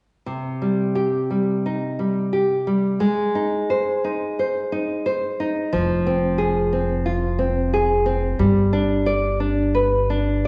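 Played in a loose, rubato 4/4, this short fado-style ballad moves with a passionate, mournful sway, cut from a longer piece. A dark, classical nylon-string guitar carries the accompaniment from 0.3 seconds, fingerpicked and up front, with the occasional finger squeak audible against the strings. The harmony passes through Cm, Ab, Fm and G, giving the passage a heavy, sorrowful pull. At 5.7 seconds a pizzicato upright bass with steel strings joins low in the mix, its woody, thumpy notes sitting deep beneath the guitar. Both instruments sit in a wet recital hall reverb with a church or concert-hall resonance, and the high end is rolled off, lending the sound a soft, shadowed glow.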